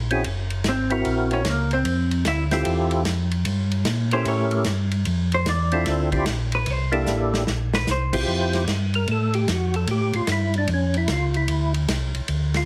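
A percussive tonewheel organ with key click and slow rotary shimmer carries the melody over a round, mellow organ bass line and a distant, roomy soul drum kit with dark cymbals, while a dark, hollow-body jazz guitar takes a clean, picked solo until 8.2 seconds before the organ steps forward to solo in this soulful, bluesy soul jazz organ trio excerpt, all squeezed through a heavily compressed radio sound with light reverb.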